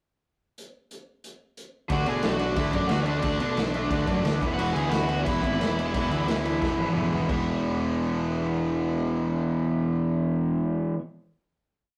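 A rough, saturated rehearsal-room sound frames this short, rebellious punk rock piece, where a boomy, gritty garage drum kit opens with a pickup bar before two bright overdriven guitars drive eighth-note power and barre chords, a fuzzy picked bass pushes eighth notes beneath, and a dark, smooth lead guitar states a motif-based melody partly doubled in octaves over the D-to-E chorus, until a drum fill at 6.6 seconds leads into a final chord.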